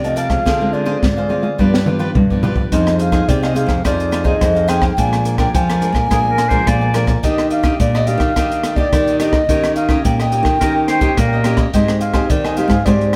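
A lively, bittersweet samba and choro at 106 BPM in 4/4 opens with a full band at once. A pure, wooden baroque flute carries the melody with vibrato and a crisp attack, close-miked and expressive, bathed in plate reverb. Beneath it, a crisp picked cavaquinho and an up-front, fingerpicked nylon-string guitar with fresh strings share the accompaniment, while a second classical nylon-string guitar supplies a warm fingerpicked bass line. A compact cocktail drum kit, dry and up front with a high-tuned snare and punchy kick, plays a fill from 0.5 to 2.7 seconds as the harmony moves from Dm7b5 and G7 into Fm7, then on through Bb7 and Ebmaj7 toward Abmaj7. A bright, vintage-toned clarinet adds a brief classical-style second line at 6.1 and again at 10.6 seconds. The whole ensemble sits in a wet studio room, heard from further back, in this short extract from a longer piece.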